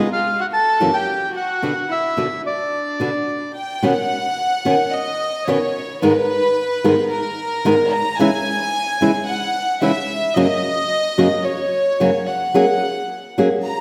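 The warm, sul tasto violin section floats over a bright, fingerpicked flamenco guitar with audible finger squeak in this sultry, tense rubato tango excerpt at 110 BPM, where a reedy, vintage bandoneon carries the melody until 3.5 s before the music turns from B minor to B major at 3.8 s and the violins take the solo through a Badd9, G#madd9, C#m and F# progression, all bathed in a wet scoring stage reverb.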